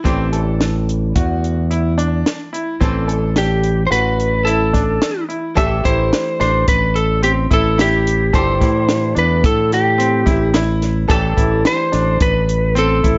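Progressive instrumental band music in 5/4 at 108 BPM, this brooding, intricate excerpt sits in A minor with a straight feel and moves from an A7(no3) chord to Am7 at 5.6 seconds. A bright concert grand piano plays arpeggios from the start, its brilliant, worn tone carrying deep bass and a present edge, touched with slapback echo. Beneath it, a miked and amplified archtop guitar supplies clean, picked, compressed accompaniment, dark and hollow-bodied, double-tracked and kept in the background. A growly, up-front fingered electric bass and a compact cocktail drum kit with a dry, high-tuned snare, punchy kick and hi-hat join almost at once. At 3.4 seconds a lightly driven lead guitar enters with the melody, its slightly broken-up, picked tone sitting up front with its own slapback echo. Light reverb gives the whole a modest sense of space, and the top end stays mellow.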